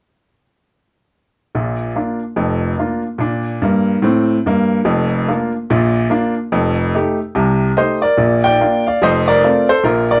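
A bright, woody upright piano sits up front in a small, moderately live room, giving this short cut from a longer stride jazz piece a vintage character. The piano plays solo from 1.5 seconds to 10.2 seconds with a gentle swing, its playful, exuberant lines ranging from deep bass notes to a brilliant upper register. A new section arrives at 8.2 seconds.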